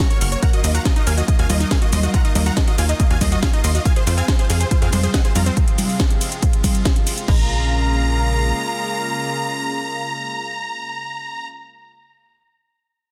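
A huge, euphoric supersaw lead carries the melody across this uplifting trance excerpt, its detuned sawtooth voices sounding full-bodied and airy, compressed and tinged with delay and sidechain pumping. The piece drives along at 140 BPM in 4/4 in Bb minor, opening on a drop with a driving yet emotional mood, while a lush, thick unison pad holds sustained chords underneath with chorus and its own pumping. A punchy, up-front electronic kick anchors the groove alongside a house drum kit of congas, cracking snare, metallic hi-hats, ride, crash and shaker, both kick and kit tape-warm and layered until they stop at 7.4 seconds. A tight sequencer bass with a fast, decaying sawtooth and square-wave filter pluck pushes low beneath them, and a warbling, vintage-tinged unison pluck sits in the background with arpeggios treated by cassette tape and tape echo. The harmony moves from Ebmadd9 to Fm before settling on Bbm7 as a new section begins at 7.3 seconds, where the lead and pad carry on to the end at 11.5 seconds. 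Light reverb and a dense, heavily limited modern master give the whole a loud, polished finish.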